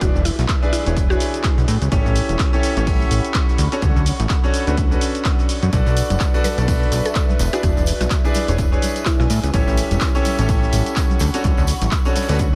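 A bright concert grand piano riff with tape echo and sidechain pumping opens this soulful, bittersweet piano house excerpt at 126 BPM, riding a punchy, funky sawtooth bass, a dry up-front electronic kick, an analog drum machine's cabasa, handclaps and hi-hat, and a very quiet brushed jazz kit, while a barely audible downlifter sounds until 1.9 seconds. A warbling, nostalgic lo-fi pad with chorus and phaser sits in the background over swung sixteenths and seventh chords moving from E7 through A7, Dmaj7 and Bm7, and a woody, round mallet-like synth pluck adds faint melody at the start and again from 6.4 seconds. Soft-handed tambourine and congas join at 5.7 seconds in light studio ambience.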